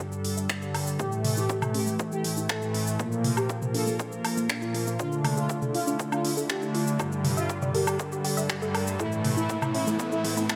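Melodic techno with a dark, dramatic build-up, where bold, wave-folded brassy pad stabs sit up front over an overdriven, layered kick and a techno kit of smooth hats, shaker, snaps, toms and woodblock, while a tight, detuned sequenced arpeggio sweeping through a filter and a morphing, warbling wavetable pad pump in the background, a fat analog brass melody enters at 1.0 seconds, and a very quiet riser arrives at 8.1 seconds, all bathed in a lush hall reverb in this excerpt from a longer piece.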